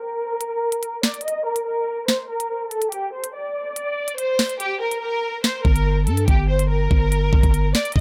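A lush, bowed violin section with vibrato carries the melody through a low-pass filter sweep and delay in this menacing, tense half-time drill cut at 143 BPM in G minor, joined at 0.4 seconds by an electronic drum kit of crisp hats, sharp snare and knocking kick. The break resolves onto a G minor chord at 4.6 seconds as the kick briefly mutes, and a growling, buzzy 808-style bass arrives at 5.6 seconds, all in a dry, close-up mix.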